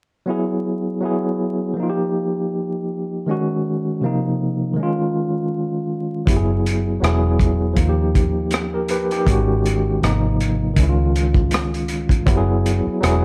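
An overdriven tine electric piano, barky and bright through a combo amp with fast tremolo, carries this introspective, smooth R&B and neo-soul passage at 80 BPM, gliding through chords like Eadd9, D# and C#add9 on its own from 0.3 seconds. At 6.3 seconds a round, punchy, foam-muted vintage bass joins with a crunchy breakbeat kit whose tight kick, rim click and hi-hat sound saturated and dark with a rolled-off top, all set in a 16th-note swing. Light reverb and a bed of vinyl crackle frame this short section cut from a longer piece.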